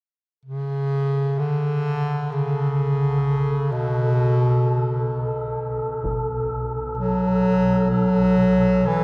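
Over a straight 4/4 pulse moving at a slow crawl, this cavernous, unsettling dark ambient drone is cut from a longer piece. A solo bass clarinet enters at 0.5 seconds, warm and up front in a classical style, with its line carried through tape echo. From 2.0 seconds a swarming, detuned synth drone fades in low beneath it, tense and granular as it evolves, with its own built-in reverb. A breathy, wind-like tuned noise layer with an airy character joins almost at once. At 6.0 seconds a very quiet taiko ensemble strikes briefly with heavy sticks, sounding acoustic in a small room, and the recording sits inside a wet cathedral reverb with a long decay.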